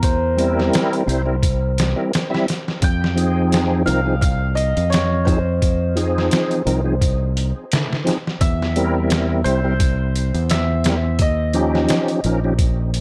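A swung, lightly shuffling sixteenth-note groove from a pitched-down, compressed sampler-style drum kit sets this brooding, melancholic trip hop piece in motion, with a thumpy kick, medium-tuned snare and hi-hat sitting up front with a tape-softened grain. A punchy, direct fingered electric bass holds the low end up front throughout. From 0.4 s to 12.5 s, a reedy tonewheel organ fills the middle with key click, chorus vibrato, a slow rotary speaker and harmonic tremolo, all roughened by 12-bit sampler grit and tape echo. Above it, a shimmering, ringing hammered dulcimer carries the melody at a lower level, also coloured by sampler crunch and tape echo. The harmony moves from C7 to Fm7, back to C7 and onto Eb9. The dry, gritty hardware sound keeps this short cut from a longer piece close and intimate.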